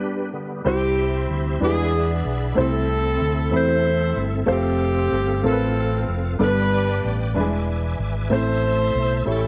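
An intimate baby grand piano, with audible action noise, and a reedy, lightly overdriven tonewheel organ through a slow rotary speaker with chorus vibrato open this reverent, jubilant gospel fragment at 63 BPM in a straight 6/8 before a tight, bright saxophone section takes the melody at 0.7 seconds over a round, punchy fingered electric bass, moving from C through E7 and Am/C to F, G and a closing Am in a small, lightly reverberant room.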